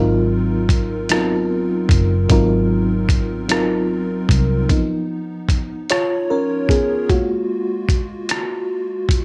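Intimate and warm, this slow 6/8 R&B fragment at 50 BPM sets a lush, dreamy FM electric piano with a soft pad layer, chorus and tremolo over a dark, round, foam-muted fingered electric bass that drops out at 4.7 seconds, while a gritty, compressed sampler-style soul kit of hi-hat, thumpy kick and rim click enters at 0.7 seconds and carries on beneath the mellow piano solo, all bathed in light digital reverb as the harmony moves from G#13 to C#9 to F#maj9.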